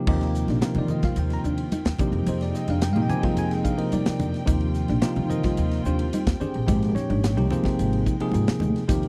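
Electric jazz fusion in Eb major at 109 BPM, this slick excerpt from a longer piece moves through Eb69, Fm7 and Abmaj9 over a straight 4/4 feel. Up front, a bell-like tine electric piano plays accompaniment alongside a woody pizzicato upright bass and a polished acoustic drum kit with punchy kick and bright cymbals. Soft-attack chamber strings hold sustained chords underneath, a dark, clean electric guitar adds chorus-tinged stabs in the background, and very quiet congas played with hard hands come in at 0.7 seconds, all in a dry, close 1970s-style studio sound.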